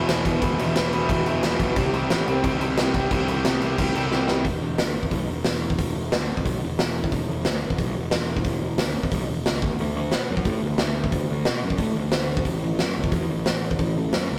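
Punk rock at 180 BPM in a straight 4/4, upbeat and energetic, cut from a longer piece. A bright, double-tracked distorted electric guitar sits up front with a picked riff over E5 and C5 power chords, playing only from the start until 4.4 seconds. A fuzz-toned picked electric bass, dark, round and overdriven, runs the full length, while a big acoustic rock drum kit with a punchy kick, medium-tuned snare, hi-hat and crash brings bright cymbals and a big-room sound. A drum fill at 4.1 seconds leads into the second section, where the guitar drops out and bass and drums carry on through to the end. The rehearsal-room recording is rough and dry, with tube saturation adding grit.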